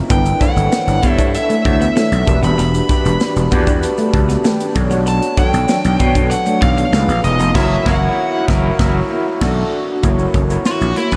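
A straight 4/4 groove drives this bittersweet, urban slice of polished 1980s jazz-funk pop, carried by a punchy studio drum kit with crash, hi-hat, kick and snare, a growly, up-front overdriven slap bass and a grainy egg shaker tucked in the background. A barky, through-the-amp tine electric piano with tremolo and chorus comps over chords moving from G6 through Em7 and Bm7 to C#7 and F#7, adding a fill at 3.8 seconds, while a clean semi-hollow guitar plays a chorused riff in the background. A dark, nasal lead guitar with a parked wah carries the melody, the band hits a shared accent from 7.6 seconds, and the lead breaks into a solo at 10.0 seconds, all bathed in a dreamy mix soaked in reverb.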